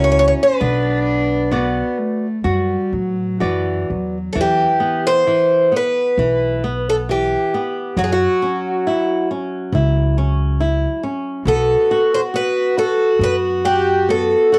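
A picked twelve-string acoustic guitar carries the melody up front from the start. Its shimmering, octave-doubled, boxy tone and finger squeaks sit over a bright, fingerpicked flamenco guitar accompaniment, a floating sul tasto cello second line, and a woody, thumpy pizzicato upright bass, in a longing, mournful fado-style ballad in B minor at 60-70 BPM with a rubato feel. The cello drops out at 4.4 s as the chords move to Em and returns at 11.5 s, while the bass stops at 14.3 s in this cut from a longer piece; the guitars and cello carry a cassette-tape character, the bass has tube saturation, and everything sits in moderate studio reverb on a home cassette recording.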